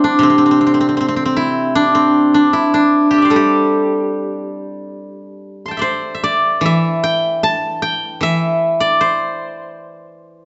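Chinese traditional solo plucked-string music in the G zhi mode, serene and elegant, moving in a free, rubato 4/4 around 69-81 BPM. A lone steel-string zither, played with fingerpicks, sits up front, ringing and silvery as it ranges from C3 to C6, with its material shifting to a new section at 5.0 seconds. The instrument's acoustic glow is wrapped in a wet recital-hall reverb with a 1.5-second decay, and the sound is rounded off above 7.8 kHz in this short passage cut from a longer piece.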